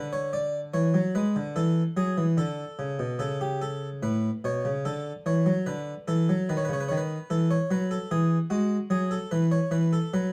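Stately yet lively, this short stretch of a longer baroque-style two-part invention for solo harpsichord moves at 73 BPM in a straight 4/4, set in A major with the instrument tuned to A4 = 439 Hz. The harpsichord, a Flemish-style instrument on one set of strings, spans A2 to D5 and sits up front and close-miked, its plucked tone round and full, with a dry character on the instrument itself. An opening phrase runs until 3.2 s, moving from E7 over D to A over E, before a longer second passage carries on to 10.3 s. That second stretch travels through A7 over C#, D, B7 and E, settling on a bare E5 at 9.7 s. A light reverb and a dark, warm production give the modest-level recording an intimate glow around the plucked strings.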